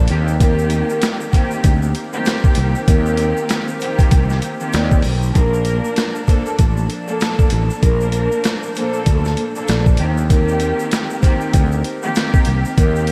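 Soulful and nostalgic, this boom-bap hip-hop excerpt rides a swung groove from a gritty, pitched-down sampler-style drum kit with a thumpy kick and high-tuned snare, up front alongside a growly, bright fretless electric bass. Dark, lush bowed strings with expressive vibrato carry the accompaniment through cassette-tape coloring, while a mellow vibraphone played with soft mallets sings the melody in the background through tape echo, over a hollow, airy, flute-like pad with chorus and a grainy egg shaker entering at 0.3 seconds. Chords move from Eb6 to Bbmaj7 at 5.4 seconds and back, all set in light studio reverb with vinyl crackle.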